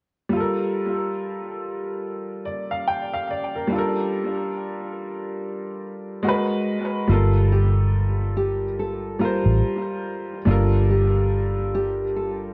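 Lo-fi hip hop in G minor at 71 BPM, this hazy, nostalgic excerpt moves in 4/4 with a relaxed swing on the sixteenths. A woody, smooth upright piano carries the accompaniment from 0.3 s, sitting up front with long sustain, its vintage tone colored by cassette tape, a low-pass filter and tape echo. The harmony rests on Gm9, shifts briefly to Abm9, and returns to Gm9 at 7.1 s, where a new section begins. At that point a thumb-plucked nylon-string guitar takes the melody with fresh strings and a classical character, filtered and echoed, while a dark, round, foam-muted electric bass enters up front, holding the low register. The echo-heavy mix sits in a moderate spring reverb along with a studio reverb, and the cassette coloring adds a nostalgic haze before the clip ends at 12.5 s.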